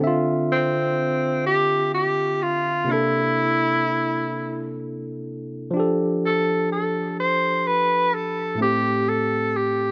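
Sultry and late-night, this short R&B excerpt in a slow 6/8 opens on a bright, barky tine electric piano with a touch of overdrive, laying down lush chords from Dm9 through C13, F69 and Am7. At 0.5 seconds a breathy tenor saxophone enters with a whispered, subtone melody, mellow vibrato and scooped notes, its slapback echo lending a vintage flavor. Both parts sit up front in a dry, direct sound with little reverb and an outdoor feel, giving the saxophone an intimate, close presence.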